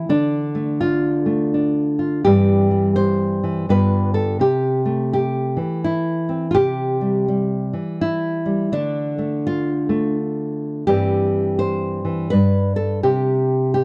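Gentle folk in 3/4 at 84 BPM with a lilting swing, this short excerpt features a solo fingerpicked nylon-string guitar in C major, tuned to A4 = 441 Hz, with a warm, classical touch that sits up front. It states its opening phrase and repeats it at 6.6 seconds, moving through Dm, C/G, G7 and C6 before a brief chordless moment settles on C5 at 13.0 seconds. The close, dry 1970s-style studio sound keeps the intimate guitar clear and unadorned.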